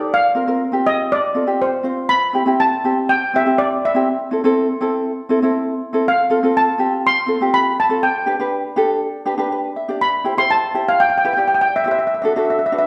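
A straight, even 4/4 pulse drives this bouncy, sunny calypso, cut from a longer piece, with chords moving from Fsus4 through Cmaj7, F and G to a closing D. Up front, a lead steel pan struck with hard rubber sticks carries the melody in a shimmering, dark and smooth metallic tone, while a light, thumb-plucked acoustic ukulele, also up front, supplies the accompaniment and adds a short fill at 9.3 seconds. The band plays live together in a large studio, wrapped in a wet reverb.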